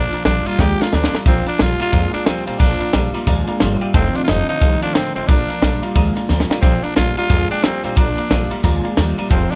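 A swung 4/4 groove drives this rollicking, retro rockabilly clip, cut from a longer piece. A compact cocktail drum kit enters at 0.1 seconds, up front and dry, with a punchy kick, a high-tuned snare and dark ride cymbal, and it plays fills at 0.6 and 6.3 seconds. Beneath it, a woody, thumpy pizzicato upright bass with gut strings anchors the low end, while an electric guitar through a small old amp repeats a twangy, slightly broken-up riff colored by a phaser. The growling tenor saxophone carries the melody, breathy and raspy with light vibrato, gritty and present in a pop-style solo voice. In the background, a full-bodied picked dreadnought acoustic guitar with fresh strings and audible finger squeak adds accompaniment alongside a jangly, metallic tack piano, as the harmony moves from Bb to F7 and back to Bb in a close sound with little reverb.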